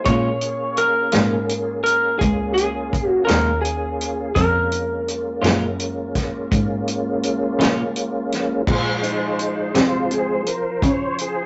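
A slow 12/8 blues pulse at 56 BPM, counted in dotted quarters, carries this mournful, soulful piece in Bb minor. It opens on Bbm7 with a tight, mid-forward soul drum kit and a distant, bowed cello with bright vibrato holding the bass. A dark, slightly broken-up lead guitar sings the melody up front until 6.5 s, over a twangy, clean electric guitar with tremolo and a clear tonewheel organ turning through a slow rotary speaker and chorus vibrato; the organ takes the solo from 8.7 s. The rough rehearsal-room sound carries tube saturation, a dull top end and moderate reverb.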